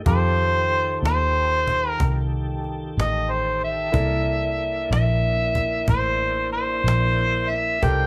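A lightly reverberant, live-in-one-room sound frames this soulful, laid-back slow blues excerpt in 12/8 at 62 BPM, where an up-front, mellow overdriven harmonica sings a jazz-style solo with light vibrato and scooped notes over an F13 chord, supported by a dark, round, foam-muted fingered electric bass, smooth sustained tonewheel organ chords through chorus vibrato and a slow rotary speaker, a brilliant concert grand piano in the background, and a woody, close and dry cajon with faint snares.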